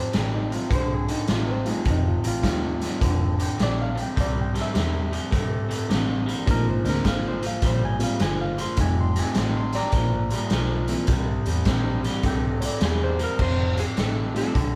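A light reverb and the feel of a band playing live in one room give this short cut from a longer electric blues shuffle a gritty, laid-back air. The raw garage drum kit sits up front, its punchy kick, medium-tuned snare, hi-hat and crash ringing in a bright stone room with a rolled-off top. Beneath it, a vintage fingered electric bass, foam-muted and round, holds down the low end, while an electric guitar through a small old amp picks a twangy, slightly broken-up riff with a lo-fi edge. A reedy electric piano, barky through its built-in speakers, fills in the ninth-chord changes with accompaniment. Near the close, at 12.9 seconds, a clean, compressed lap steel slides in with a brief, dark melody shaped by volume swells, just before the harmony returns home at 13.4 seconds.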